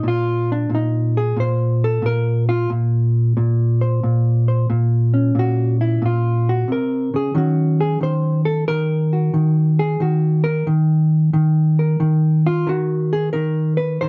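A swung 4/4 at 90 BPM drives this moody solo jazz fragment in Bb minor, tuned to A4 = 441 Hz, where an up-front, clean, dark electric hollow-body guitar, fingered and compressed, moves from Bbmadd9 to Ebm7 at 7.3 seconds across a range of Bb2 to C5, with light reverb and a live-room feel, all cut from a longer piece.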